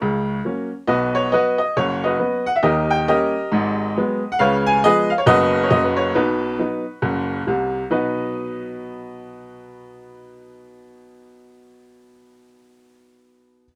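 Stride piano jazz in B major, this playful, exuberant solo swings along at 137 BPM, with a bright upright piano ranging from the low F#1 up to G#5 across a short cut from a longer piece. The instrument sounds brilliant and woody, open with short sustain and placed up front, captured by close, detailed microphones in light reverb. The harmony moves through D#7, G#m7 and C#7 before settling back on B, with a contrasting section beginning at 7.9 seconds.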